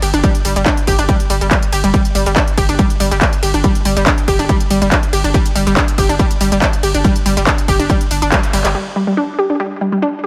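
Dark and relentless, this driving peak-time techno cut from a longer piece rides a straight 4/4 pulse from the very first second. An up-front analog pluck carries the riff, its round, detuned sawtooth and square tones roughened by vintage 12-bit sampler grit and spread by chorus and delay, all pumping against the sidechain. Beneath it, a deep, thick sine sub bass sits on a single low note, tube-saturated and filtered, sustaining under the same pumping motion. A heavy, overdriven electronic kick punches through up front from 0.2 seconds, while a layered techno kit of handclaps, smooth hi-hats and ride cymbal adds its own overdriven edge. The full band strikes an accent at 8.3 seconds, the kick falls out at 8.4 seconds, and the kit and bass drop away at 8.7 seconds, leaving the pluck riff alone in light reverb until the end.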